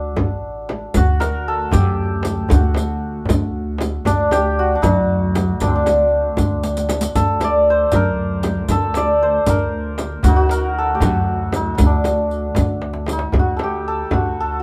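Warm and stately, this Persian modal ensemble excerpt moves in a steady 6/8 as a shimmering, ringing hammered santur carries the melody up front, over a woody, growly pizzicato upright bass and a smooth bowed double bass drone with vibrato sitting in the background. A deep, close frame drum and a compressed, saturated tombak played with hard hands keep the pulse, while a riq adds bright jingles from 0.9 seconds, with drum fills around 6.6 and 12.8 seconds. The band plays live in one room with light reverb, and the cut ends shortly after a brief new section opens at 13.3 seconds.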